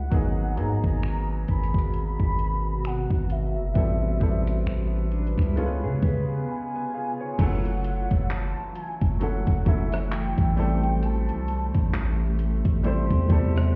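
A gated 80s digital drum machine sets a slow, swung pulse up front, its thumpy kick, rim clicks, finger snaps, handclaps, hi-hat and crash cymbal wrapped in gated reverb, while a deep, sine-toned 808-style bass sustains underneath in this sensual, moody contemporary R&B fragment. A clear grand piano carries the chords throughout, a dark, clean electric guitar plays arpeggios through tremolo and digital delay until 7.4 seconds, and a velvety, detuned synth lead with chorus and delay sings the melody until 11.9 seconds, while a blurred granular pad drifts in the background from 1.4 seconds. The mix sounds muffled, as if heard through a wall, within a stone room reverb.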